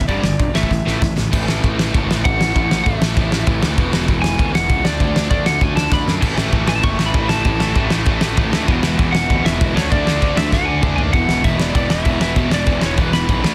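Punk rock excerpt at 196 BPM, upbeat and energetic, where a twangy, slightly broken-up lead guitar carries the melody over two picked rhythm guitars (one distorted, one crunchy that drops out at 1.3 seconds and returns at 6.2), a growly fuzz bass, and an up-front loose indie drum kit with a fat snare, punchy kick and dark cymbals, whose fills mark changes over chords like A5, E5 and D5 in a dense, dry, heavily limited mix.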